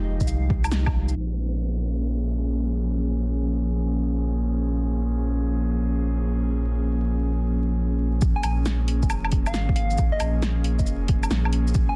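A dense, heavily limited master carries vinyl crackle, a low-pass filtered haze, light reverb and lossy-compression artefacts over this wistful, melancholic future garage cut from a longer piece, with a swung 4/4 groove. An airy, breathy pad of detuned triangle and sawtooth tones with a noise layer holds sustained chords up front, its chorus and sidechain pumping joined by a round, deep sine sub bass that also pumps. After a brief opening hit from an overdriven electronic kick and a deep house kit of hi-hat, shaker, punchy snare and woodblock, a distant electronic downlifter enters at 1.2 seconds while a filter sweep runs across the middle stretch. The drums return at 8.2 seconds, both layered kick and kit gritty with overdrive and re-recorded in a small room. At 8.4 seconds a gentle, keys-like FM lead arrives with decaying struck notes high in the register, coloured by vibrato, chorus, cassette tape wear and tape echo.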